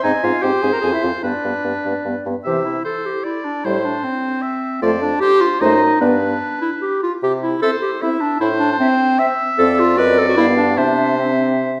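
Up front and loudest, a warm clarinet plays accompaniment in a quick, graceful and cheerful classical-period movement for wind quintet, taken at 151 BPM in 3/4 with a straight feel in C major. A silver concert flute carries the melody with an airy, crisp, somewhat distant tone, while a bright oboe adds a second line, a soft-attacked French horn fills the middle, and a mellow bassoon with light vibrato and a smooth top holds the bass. The five parts play together in a wet recital hall, with the harmony opening on Ab before a brief first section gives way at 2.5 seconds to a longer passage that circles through C, Am, Dm7/F and G back to C.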